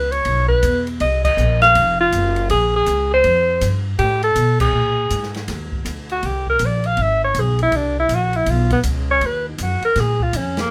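A warm alto saxophone with light vibrato, subtone and scooped notes carries the melody over a woody, growly pizzicato upright bass and an airy small-room drum kit of dark cymbals and a boomy kick in this swinging, playful small-group jazz excerpt, where the band hits accents at 1.2 and 4.6 seconds before the saxophone takes a solo from 5.5 seconds under light reverb.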